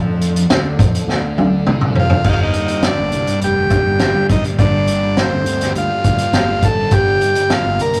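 A rough rehearsal-room recording with tube saturation and a short, wet booth ambience frames this hypnotic, trippy psychedelic rock excerpt in a straight 4/4. A dark, double-tracked fuzz guitar riff with phaser sits in the background beside a round, overdriven fuzz bass, while a vintage acoustic drum kit with a punchy kick and dark cymbals plays up front, its fill from 1.1 to 2.3 seconds leading into the second section. A buzzy, clean combo organ melody enters at 2.0 seconds alongside very quiet, lush string machine chords with a slow attack and ensemble chorus.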